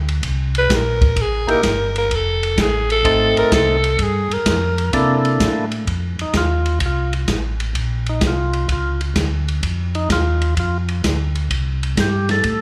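A swung 4/4 groove drives this greasy, bluesy soul jazz organ trio fragment, with a dark, boomy-kicked acoustic drum kit and a round, mellow tonewheel organ bass line turning through a slow rotary speaker. A growling alto saxophone solos from 0.6 to 4.9 seconds with raspy tone, vibrato and scooped notes. A percussive tonewheel organ, full and clicky with second-harmonic percussion, joins at 1.5 seconds and takes the solo from 5.9 seconds, all set in a moderate recital hall reverb.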